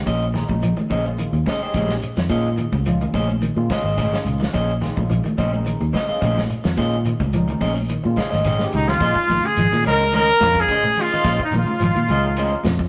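A rough rehearsal-room recording with tube saturation and a moderate stone-room reverb carries this driving, defiant afrobeat groove at 107 BPM on a Bbm11 chord, where a round, up-front fingered bass, a roomy soul drum kit with a tight kick, very quiet ringing congas and a grainy shekere underpin a slightly broken-up guitar's stabs, a clean semi-hollow guitar's arpeggios and a barky tine electric piano with phaser that starts a fill shortly before a drum fill joins it. Then two clear trumpets with light vibrato enter at 8.8 s, one up front on the melody and one in the background on a second line with scooped notes, in this cut from a longer piece.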